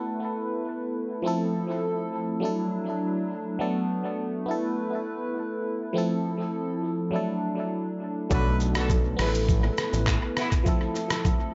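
An echo-heavy mix with nothing above 7.8 kHz, light reverb and a digital ambience opens this breezy, sunny afrobeats excerpt at 102 BPM in a straight 4/4, cut from a longer piece. A biting, warbling FM electric piano sits up front with phaser and analog delay, carrying the accompaniment through a loop of Asus2, Fmaj7, Dadd9 and Bm7, while a hollow, flute-like pad holds mellow sustained chords beneath it with a gentle chorus. At 8.3 seconds the groove arrives: a compressed, tape-toned sampler-style drum kit with a thumpy kick, handclaps, hi-hat, rim click and shaker, touched with analog delay and captured in a large room. A fat, detuned sawtooth bass with a filter sweep enters up front at the same moment, and very quiet congas and bongos add a bright acoustic edge. A distant, roomy horn section plays a brief second line from 8.3 to 10.5 seconds before the clip closes on the piano and pad.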